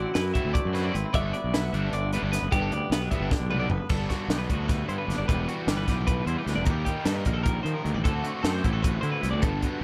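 Propelled by a straight 7/8 pulse at 304 BPM counted in eighths, this wistful yet bright math rock and midwest emo passage in G major is cut from a longer piece. It opens with a bright twelve-string electric guitar melody that stops at 3.5 seconds, while a second twelve-string guitar carries compressed, twangy arpeggios throughout. Alongside them are a twangy clean guitar soaked in spring reverb, a double-tracked overdriven guitar riff, a punchy fuzz-driven fingered bass up front, and a crisp acoustic fusion kit with a high-tuned snare and pumping small-room sound, whose fill from 3.3 seconds leads into a new section at 3.9 seconds, where the harmony moves from Gmaj9 through Em7 and Ebmaj7 to D7 in an otherwise dry mix.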